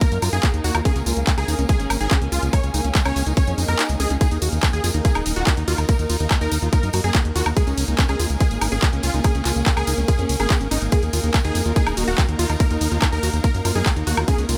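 A straight 4/4 pulse at 143 BPM drives this hypnotic, driving psychedelic trance passage, cut from a longer piece. A tight, up-front electronic kick anchors it and drops out briefly at 3.8 seconds as a background electronic swell sounds from 3.5 seconds, over an overdriven techno kit of handclaps, hi-hat, ride cymbal and woodblock plus a jingly acoustic tambourine. A round, deep analog bass holds the low end while a punchy, bright supersaw stab carries the melody through phaser and delay, a squelchy, resonant acid riff with distortion, chorus and delay sits in the background, and a granular, tense swarming drone and lush, bowed symphonic strings supply sustained chords and texture, with the stab, acid line, drone and strings pumping to the sidechain in a dry mix whose harmony alternates between Eb5 and Db5.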